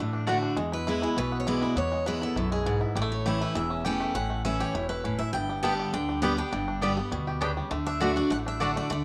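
Joyful and rustic, this short bluegrass passage cut from a longer piece races along at 202 BPM in a straight 4/4, moving through D, E, A and G before returning to D. A bright, full-bodied dreadnought guitar carries the high melody alongside a mellow, twangy banjo played with fingerpicks, while a second picked guitar with fresh strings sits up front in the accompaniment over a dark, woody pizzicato upright bass. A double-strung mandolin adds brief stabs, first at 0.3 seconds and again from 5.6 to 8.7 seconds, and a moderate echo-chamber reverb gives the ensemble a roomy sound.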